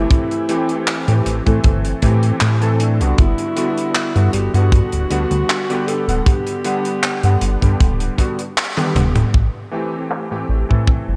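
This woozy, faded vaporwave piece, cut from a longer work, opens on an Am7 chord with a mellow alto saxophone melody, an electric grand piano with a clangy, vintage low end, and a glossy, nasal chorused synth bass. The tempo is a relaxed 78 BPM in 4/4 with a light swing on the sixteenths, in G major and tuned slightly sharp of standard pitch. The saxophone sings a solo line in a classical style with vibrato and tape echo, while the piano accompanies through ensemble chorus and analog delay as the harmony moves to Gmaj7. Beneath them, the retro pulse-wave and sawtooth bass plucks with a fast attack, and a tight, up-front acoustic kick anchors a small-room funk kit of handclaps, hi-hat and toms, its hats, toms, snare and room muffled by low-pass filtering and set in gated reverb. The saxophone drops out at 7.8 seconds, the band hits an accent at 8.6 seconds and a drum fill arrives at 8.8 seconds, and at 9.3 seconds a new section returns to Am7, all wrapped in light small-room ambience.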